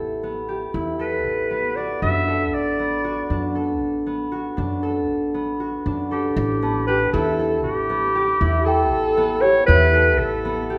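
Running in an uneven 5/8 with a straight feel at 235 BPM counted in eighths, this restless, playful piece of contemporary chamber music is tuned to A4 = 437 Hz and is cut from a longer work. A concert harp plays ringing, fingerpicked arpeggios up front throughout, alongside a woody, dark pizzicato upright bass on steel strings anchoring the low end. From 1.0 seconds a bright clarinet carries the solo melody in a jazz style, with vibrato and scooped notes, its tone roomy and distant yet placed up front; it pauses and returns at 6.1 seconds. A bell-like, delicate celesta with medium felt hammers adds sweet texture in the background from 6.6 seconds. The harmony moves from A5 to Bm7/A, the opening section repeats, and a wet recital hall reverb surrounds the ensemble.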